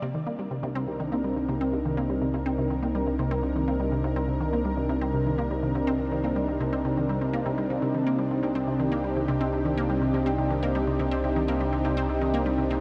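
Hypnotic and cosmic, this ambient space-music passage, cut from a longer piece, is driven by a squelchy, resonant blip pluck that repeats a bright riff through chorus and tape echo, sitting up front over a single sustained Cm7 harmony. A lush, thick unison pad of detuned sawtooth voices holds slow-swelling chords with chorus, while a round sine sub bass anchors the low end on a deep C. The whole dreamy mix is soaked in a huge ambient reverb with a 7.9 s tail, lending the 12.8 seconds a weightless, floating quality.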